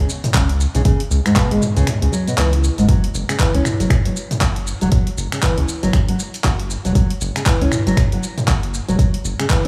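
Afro house at 118 BPM in 4/4, with a 59% swing on the sixteenths giving this driving, spiritual cut from a longer piece its swung feel. A thumb-plucked nylon-string guitar with fresh strings plays arpeggios from G#2 to F#4 throughout, its classical tone colored by tape echo and sidechain pumping. Beneath it, a round analog bass built from sawtooth and sine with ring modulation holds down the low end from E1 to C#2, dark and evolving with a fast attack and sustained notes, and it also pumps with the sidechain. A deep house kit of finger snaps, handclaps, hi-hat, shaker and toms enters at 0.1 seconds, joined by a deep, layered electronic kick at 0.3 seconds, both tape-warm and re-recorded in a small room. The kick drops out between 1.9 and 2.9 seconds before returning, and light reverb with digital ambience surrounds the mix.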